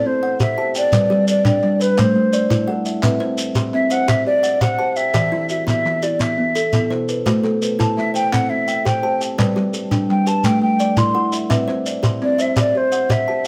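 Trance-like and hypnotic, this southern African traditional piece turns an mbira-style interlocking cycle in a straight 12/8 at 113 BPM, cycling through C, G, Am and Em. Two kalimbas weave arpeggios throughout: one thumbnail-plucked with a woody, ringing tone, the other fingertip-plucked, soft and short with a boxy character, together spanning from B2 up to C6. Over them, a metal jazz flute carries the melody between B4 and C6, airy and hollow with a crisp chiff on each attack, vibrato and rolled-off highs. From 0.4 seconds, a grainy, compressed and saturated shekere joins alongside a group handclap that sounds human and hollow in a small room. The flute and shekere sit up front in this live, single-room performance, touched with light reverb in a brief cut from a longer piece.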